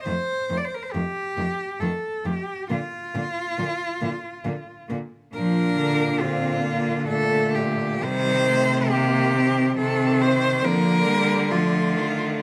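Light reverb frames four cellos in this yearning, elegiac classical passage, cut from a longer piece and moving in a rubato 3/4 at 68 BPM in Bb major. Up front and close, the lead cello sings the melody with expressive vibrato and portamento, while a second cello carries a smooth, even inner line. A third cello gives intimate, soft-attack accompaniment sul tasto with an airy bow, and a rich, distant-sounding bass cello anchors the low end, as the harmony moves from F7 to Bb and on through Cm7 to Bb/D at 10.6 seconds.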